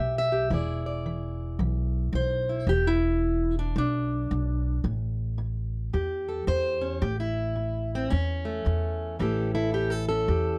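Acoustic country blues with a soulful, gritty mood, this short excerpt moves at 111 BPM in 4/4 with a swung eighth-note feel, centred in A mixolydian. A fingerpicked, plugged-in steel-string acoustic guitar carries the melody, its boxy, parlour-sized tone sitting up front and spanning from A2 up to E5. Beneath it, a pizzicato upright bass with steel strings gives a woody, dark low end in the same forward position, playing from E1 to E2. The harmony opens on a bare A7, shifts to E7 almost at once, and returns to A7 at 4.9 seconds. At 9.2 seconds the music moves into a new section where the guitar takes a brief solo until the cut at 10.6 seconds, all set in a light reverb.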